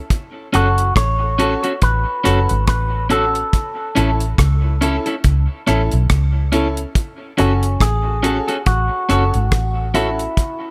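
A deep, dry reggae kit with a tight kick sits up front on hi-hat, kick and rim click, joined by a round, foam-muted fingered bass that anchors this serious, laid-back roots reggae excerpt with a swung sixteenth-note feel. A dark, clean guitar through an envelope filter carries the melody while a slightly broken-up, picked guitar accompanies, both trailing dub echo, as a brilliant, woody, slightly detuned upright piano adds stabs. The chords move from F#m to A at 3.5 seconds and back to F#m at 7.0 seconds in a dry room.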